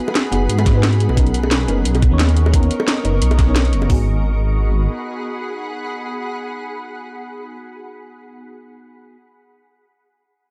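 A dark, softly reverberant production opens this soulful, rolling excerpt of liquid drum and bass at 176 BPM in G# minor, where a round, warbling FM electric piano with chorus, phaser and dub echo moves from G#m7 to Bmaj9 over a shimmering, ethereal pad that pumps gently against the beat. Layered electronic drums bring a knocking kick, a cracking snare and metallic hats with a light swing, while very quiet, high-tuned bongos under soft hands add a tight acoustic touch. Up front, a deep, rumbling detuned saw bass carries the low end until 4.9 s, after which the electric piano and pad play on alone, the pad dropping out at 7.4 s and the piano at 9.1 s.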